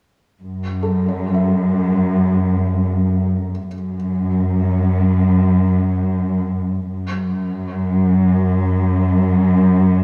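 Reflective and spacious, this ambient fragment, cut from a longer piece and tuned to A4 = 444 Hz, drifts in free time over a bowed chamber cello section that holds the bass up front from 0.4 to 10.0 seconds with warm vibrato, soft attacks and expressive portamento. A thick-felted upright piano fades in with dark, intimate, mellow arpeggios set low in the mix, its action noise audible beneath a subtle chorus and tape echo, playing from 0.8 to 4.0 seconds. The harmony rests on an A6/F# chord before giving way to a chordless passage at 3.7 seconds, all within the close air of a small room.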